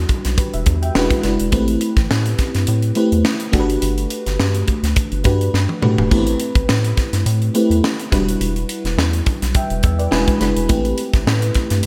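Polished 1980s jazz-funk pop with an upbeat, urban mood, moving at 105 BPM in 4/4 with a light sixteenth-note swing, built over chords such as Em7, Am7 and Gmaj7. An up-front FM electric piano layered with a soft pad carries the harmony with a lush, dreamy chorus sheen and adds a fill from 9.6 to 10.7 seconds, while a rubbery, hollow square-wave bass bounces underneath. A crisp fusion drum kit with a high-tuned snare, tight kick and gated reverb drives the groove and drops in a fill at 5.5 seconds, all set in a bright digital production with a lush hall ambience.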